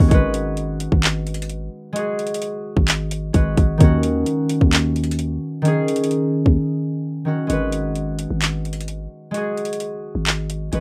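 A ringing, fingerpicked concert harp, a growling, buzzy 808-style bass and an up-front trap kit of hard-clipped kick, metallic hi-hats and handclaps all open this dark, menacing half-time trap excerpt at 130 BPM, moving from Abm7 to Ebm7 before a break at 6.6 seconds and a new section at 7.5 seconds, all in a dry, rough home demo mix.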